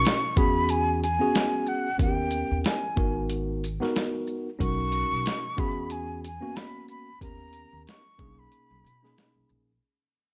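A breathy, mellow silver concert flute carries the melody up front, its soft attack and expressive vibrato floating between F#5 and C#6 over a cool, smooth jazz-hop groove in B major. A worn, slightly out-of-tune tine electric piano plays clean, direct accompaniment in the middle register, moving through E69, D#7b13, G#m9 and Bmaj9 before settling on Bmaj13. A dusty, sampler-style soul drum kit sits up front at 92 BPM in 4/4 with a swung 16th-note feel; its thumpy kick, medium-tuned snare, hi-hat and shaker sound compressed, gritty and overdriven. A woody, growly pizzicato upright bass enters at 0.4 seconds and sits lower in the mix. The dark production is lightly touched by reverb and digital ambience, and this excerpt, cut from a longer piece, fades out across its full length, ending at 9.8 seconds.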